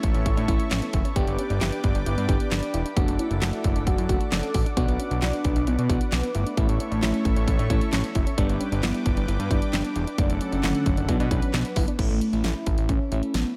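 A punchy, layered electronic pop drum kit sits up front with handclaps, crash, hi-hat and a fat snare, driving this cool synth-pop excerpt at 133 BPM alongside a thick, detuned sawtooth analog bass with an evolving filter sweep. Over them, a velvety, mellow synth lead carries the melody with vibrato, chorus, phaser and shimmer reverb, while a vintage, warbling FM electric piano in the background and a smooth, chorused analog pad fill out the harmony. A very quiet, dark, round pluck adds soft arpeggios until 11.9 seconds, and the chords move through A, G, D/F# and Bm in a light reverb, returning to A at 12.0 seconds.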